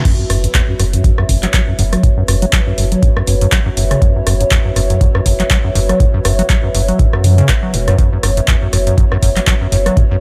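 A squelchy, resonant square-wave acid bass riff with tube saturation and a cassette-tape grain opens this raw, trippy acid house excerpt at 121 BPM in F# minor, alongside a mellow ambient pad of chorused sawtooth and sine layers with built-in reverb, both pumping against the deep, tape-warm electronic kick. A punchy analog drum machine supplies crash cymbal, handclaps, hi-hat and rim clicks with a 16th-note swing, while a thick, saturated triangle sub bass enters at 0.3 seconds. A moody, detuned and wave-folded analog pad with chorus sustains an F# minor chord in the background from 1.0 seconds, and the mix stays largely dry.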